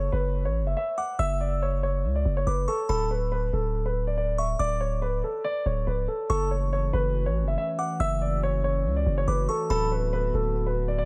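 A tense, ominous hip hop cut from a longer piece, moving in a half-time feel over chords that shift from F#7(no3) to Bm7, then F#m7 and D6. A dark, mellow concert grand piano carries the melody up front, its tone softened by a low-pass filter and given a vintage, smooth character. Above it, a delicate synth tine bell adds a tinkling, bright second line, its FM sound warbling through chorus and tape echo. Underneath, a long sustained 808-style bass sits deep and prominent, with a sine tone that strikes fast and then decays. At 6.7 seconds a warbly tape-like pad enters with slow-attack sustained chords, its lo-fi, nostalgic texture colored by chorus and its own reverb, all set within a digital ambience.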